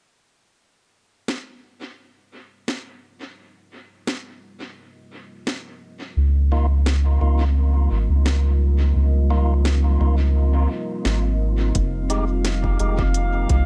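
A round, up-front sub bass arrives at 6.2 seconds beneath a slowly fading-in, detuned and warbling dark pad and a drum kit of woody snare and smooth hi-hats trailing dub echo, while a lightly overdriven tonewheel organ with key click and fast rotary speaker adds echoing stabs, a punchy overdriven kick slips into the background at 11.8 seconds, and a glassy harmonics texture drifts in at 12.2 seconds, giving this meditative, hazy ambient dub piece a dry, echo-heavy mix.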